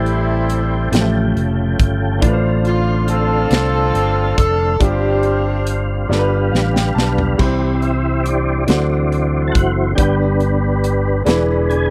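A slow, steady 6/8 pulse carries this soulful, uplifting gospel fragment, with a punchy, polished studio drum kit and a round, dark fingered electric bass up front beneath an intimate, boxy grand piano and a smooth tonewheel organ turning through a slow rotary speaker with chorus vibrato. A tight jazz-style horn section with light vibrato sings the melody until 6.1 seconds, when the drums and piano fill the gap. At 7.4 seconds the organ takes a clean, warm solo while a very quiet, dark French horn section holds soft chords, all in a dry, close 1970s-style room with light reverb.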